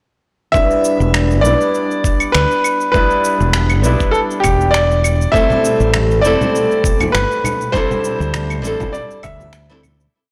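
A clear, up-front grand piano carries a motif-based melody through digital delay in this smooth, relaxed sunset chillout piece in E minor at 100 BPM, set over a fingerpicked flamenco guitar holding chords with syncopated pushes, its fresh strings squeaking under a low-pass filter sweep. A round, punchy fretless bass enters at 1.0 s with a dub-style line, while a gritty, thumpy overdriven kick and a layered electronic beat of shaker, finger snaps and claves set a light lounge groove, joined at 5.5 s by distant, low-tuned congas. The harmony moves from Em7 to Am7 and D9sus4 in a blown-out, overdriven recording with moderate stage reverb, and the piece fades out from 6.9 s to 10.1 s.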